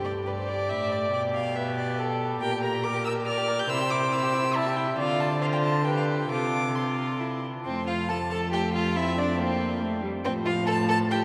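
A quick, spirited and graceful classical-period string quartet movement in triple time, cut from a longer piece, in which one violin carries the melody over a second violin's close, rich inner line, a nasal viola accompaniment and an up-front cello bass, all four gut-string instruments bowed in period style with a reedy edge and bathed in a long, wet cathedral reverb, moving from its opening section into a new one at 7.7 seconds.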